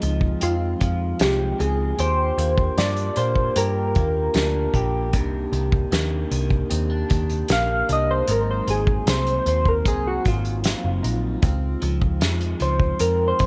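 Heard from the first moment of this dreamy, sunny indie and bedroom-pop excerpt at a straight 76 BPM, gentle triangle-toned electric-piano-like synth keys carry an up-front solo melody through phaser, lush chorus and tape echo over Dbmaj7, Ebmaj7, Cm9 and Ab7 chords, backed by a slightly broken-up, compressed electric guitar through a small old amp with chorus and vibrato, a mellow, flute-like tonewheel organ turning in a slow rotary speaker with a cassette-tape tinge, a dark, round, foam-muted picked bass, and an unplugged drum kit with a fat snare, punchy kick and bundle sticks, the whole mix sitting in a moderate spring reverb.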